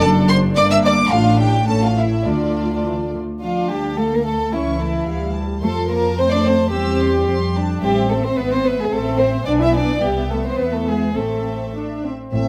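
Close, detailed microphones and a light reverb give this excerpt from a quick classical-period movement for symphony orchestra an immediate, present sound. At 108 BPM in a straight 2/4, the strings drive an urgent, stormy mood in D minor, turning to A minor at 7.8 s. The dark first violins carry the melody with light vibrato and a smooth top. Beneath them, a second violin section, pure and floating, sits up front on its own line. Woody violas with vibrato fill in the accompaniment, while intimate cellos join warm double basses on the bass. All of these strings are bowed sul tasto, and the violins, cellos and basses play with soft attacks. At 12.3 s a mellow French horn section, distant and roomy, arrives with sustained chords just as the passage is cut off.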